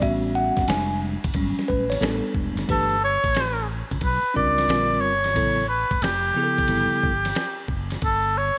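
A moderate spring reverb glows around this mellow, nocturnal jazz-hop excerpt at 90 BPM, swung on the sixteenths. A bell-like tine electric piano sits up front with rich extended chords, featured through the opening 2.7 seconds over a round, dark fretless bass and a dusty, compressed sampler-style kit of thumpy kick, fat snare, gritty hi-hat and ride. At 2.7 seconds a clear, close-miked oboe enters to carry the melody in a classical style with light vibrato.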